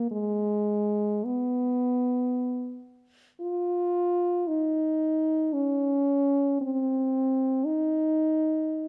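A lone, mellow French horn sings a lonely, yearning phrase in free time, moving between Ab3 and F4 through light reverb and close, detailed microphones for this brief classical passage cut from a longer piece, lasting 8.9 seconds.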